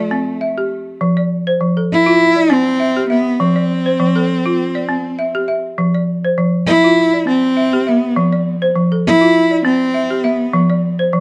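Flowing and hypnotic, this West African traditional string and xylophone piece pairs a single bowed cello, rich and focused with vibrato, carrying the melody up front, with a woody, round balafon struck with hard rubber mallets playing dry, mid-forward arpeggios over a light sixteenth-note swing, the cello stopping at 10.5 seconds while the balafon continues to 11.2 seconds in a dark production with light reverb, cut from a longer piece.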